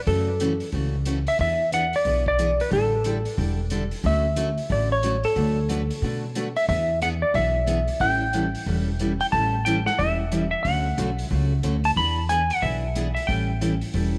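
Light reverb and a small-room ambience frame this cheerful, playful western swing excerpt, taken at a brisk 182 BPM in a swung 4/4 and tuned to A4 = 438 Hz. A dark, clean lap steel guitar carries the slide melody up front through tape echo, while a full-bodied dreadnought acoustic guitar picks the accompaniment with audible finger squeak and a woody pizzicato upright bass on steel strings sits forward in the low end. A vintage drum kit plays hi-hat, punchy kick and medium-tuned snare low in the mix with a pumping room sound and a rolled-off top, as the chords move from F#m7 through E7 and Dmaj7 to A7.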